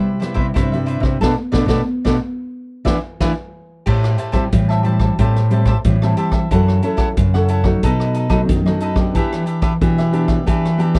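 A straight 4/4 pulse drives this short fragment of samba and choro, with a swinging big-band drum kit entering at 0.2 s on a boomy kick, a medium-tuned snare, rim clicks, hi-hat and crash cymbal, its sound roomy and rolled-off at the top. Two nylon-string guitars carry the harmony and low end from the start. One is a full-bodied, fingerpicked classical accompaniment, and the other plays a deep classical bass line. A crisp, picked cavaquinho sits higher and quieter in the mix, adding a warm accompaniment over the guitars. The band lands a shared accent from 1.2 s, and at 3.9 s the music moves into a new section whose seventh chords give it a nostalgic yet lively lilt. The dry sound, with little reverb, keeps the acoustic instruments present.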